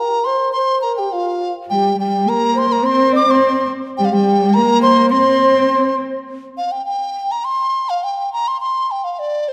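A straight 2/4 pulse at 104 BPM carries this festive, graceful Chinese traditional chamber piece in C shang mode, cut from a longer work, where a mellow, hollow large dizi with a buzzing membrane leads the melody up front in a pure, tongued line touched with vibrato, a low, airy end-blown xiao with a crisp attack adds a close, expressive second line, and a single dark bowed cello joins at 1.7 s with portamento and vibrato before both supporting parts stop at 6.0 s, leaving the dizi alone through the closing section until 9.5 s, set within a reverberant concert hall ambience.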